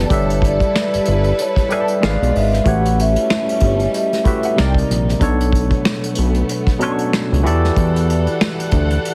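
A barky, lightly overdriven tine electric piano, a fat, detuned analog bass up front, smooth bowed studio strings and an unplugged acoustic drum kit with finger snaps, hi-hat, kick and snare open this introspective, late-night R&B and neo-soul excerpt at 94 BPM in B minor with a swung sixteenth feel, while a mellow, ringing vibraphone carries the melody until 4.5 seconds, a clean electric guitar with wah and lush chorus adds a background second line from 1.4 to 7.0 seconds, and the whole mix has a heavily compressed, radio-like sound in a small room.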